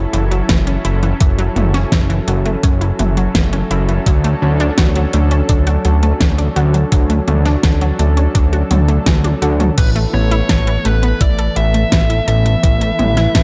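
Nocturnal and moody, this synthwave passage moves at 84 BPM in a straight 4/4, cut from a longer piece and wrapped in a dark production with light reverb and a digital ambience. A lush unison pad holds thick, detuned sustained chords with chorus and sidechain pumping, while an analog pluck with a round, noise-tinged tone sits in the background, spinning chorused arpeggios through a digital delay. Up front, a fat, saturated sawtooth bass with a filter sweep pumps beneath the harmony, which moves from F#m7 to Dmaj7 at 4.1 seconds. A layered pop drum kit with a fat snare, metallic hats, crash cymbal and toms enters at 0.1 seconds, joined at 0.5 seconds by a thumpy, sampler-style electronic kick, and the kit plays a fill from 9.1 seconds. At 9.8 seconds the chord shifts to Asus2 and a bluesy overdriven lead guitar arrives, its picked, distorted tone carrying the melody through tape echo to the close.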